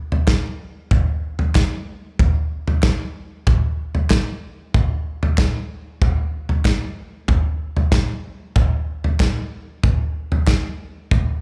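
Heard live through a venue's PA with club reverb and small-room ambience, this short, uplifting, warm folk cut at 94 BPM in a straight 4/4 puts an acoustic country drum kit up front, its punchy kick, medium-tuned snare and toms running from 0.1 to 11.3 seconds, while crisp, close group handclaps with a slapback echo sit in the background.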